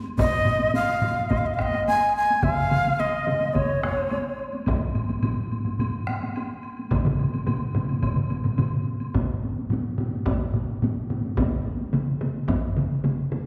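A breathy, bright shakuhachi leads up front in this ceremonial, powerful Japanese taiko excerpt, its bamboo tone shaped by vibrato, tongued attacks and a noticeable chiff in an expressive phrase that lasts only until 4.4 seconds. Beneath it, several taiko ensembles struck with hard sticks build the music's weight, one heard in a small room and two with a vintage, band-limited character, the last of these joining at 2.4 seconds, while a distant solo taiko and a woody woodblock sit far back in a large room. The woodblock stops at 9.1 seconds as the piece moves into a new section, and the whole is set in a wet concert hall heard from further back in the room.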